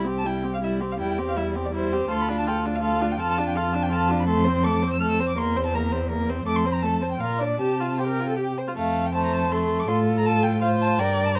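A focused, vibrato-rich first violin sits up front with the cheerful melody in this lively classical-period string quartet movement, a quick passage in triple time played with rubato and cut from a longer piece. A smooth, even second violin carries the second line, an expressive viola adds portamento and soft-attacked accompaniment, and a warm, close cello anchors the bass, all four playing from 0.0 to 11.4 seconds. Light reverb gives the bowed strings a sense of space, and the music moves into a new section at 8.8 seconds.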